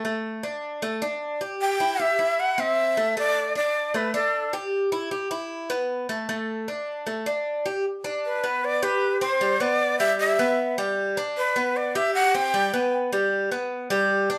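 In a straight, danceable 4/4, this sunny Latin piece, cut from a longer work, rides on a Cuban tres picking arpeggios throughout, its doubled metallic strings sounding bright and up front. A breathy bamboo shakuhachi carries the melody in two phrases, from 1.6 to 4.5 seconds and again from 8.3 seconds, with vibrato, tongued attacks, reedy chiff and a plate reverb. The whole sits in a wet studio room, heard from further back.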